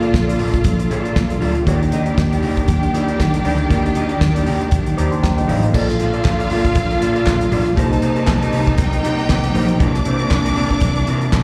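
Heard through a venue's PA with a light recital-hall reverb, this joyful, celebratory disco excerpt rides on a dry, up-front 70s drum kit with a fat snare and dark cymbals, a growly fingered electric bass and very quiet, distant congas. Around them sit soft-attack sul tasto strings holding sustained chords, a worn, slightly out-of-tune tine electric piano in the background, and a picked, slightly broken-up, lo-fi guitar with slapback echo. The electric piano plays a fill at 4.7 seconds, a lush, clear string section with vibrato enters on a second line at 5.7 seconds, and hollow, vintage group handclaps join at 6.2 seconds, both carrying slapback echo.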